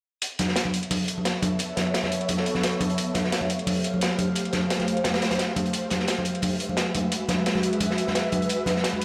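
Driving at 174 BPM in 4/4 with a light swing on the sixteenths, this lush, dreamy liquid drum and bass excerpt opens at 0.2 s with a crunchy breakbeat kit of hi-hat and snare, its medium-tuned snare saturated and gritty yet smooth, with a dark, rolled-off top sitting up front. An electronic hi-hat layer adds metallic, produced hats tucked into the background, while ringing acoustic congas join at 0.4 s and sit up front alongside the kit. From 0.8 s an ethereal, airy pad holds sustained chords with a slow attack and long release, its detuned sawtooth and triangle unison, noise layer, ensemble chorus and phaser giving it a full-bodied shimmer. The harmony drifts through suspended ninth chords, moving from B9sus4 to G9sus4, then F#9sus4 and on to A9sus4 near the close. A huge ambient reverb, like a big sound system in a bare room, bathes the whole mix in spacious, dreamy depth.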